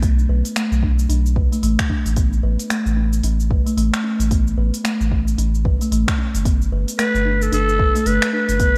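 A raspy, growling clarinet enters up front at 7.0 s with vibrato and scooped notes, adding a jazz-style solo touch to this earthy, hypnotic organic downtempo excerpt. Beneath it, a woody, hollow kalimba plays mellow arpeggios with delay, while a round, deep analog bass with sidechain pumping sits up front over Bm7, A and Gadd9 chords. A deep electronic kick and an afro-pop kit of cabasa, finger snaps and crisp hats with gated reverb keep a swung groove, all set in light reverb and bright 1980s-style digital production.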